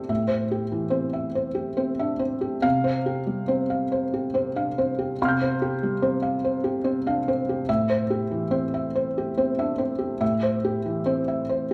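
In a rubato 3/4 lilt around 71 BPM, this peaceful, tender fragment of neoclassical minimalist piano features a solo felt-muted upright piano, dark and intimate with thick felt and audible action noise, sitting up front in a moderate large-studio reverb as it drifts from Am7 to Csus4 and back to Am7 across a range from A2 to G6, tuned to A4 = 441 Hz and captured live in one room.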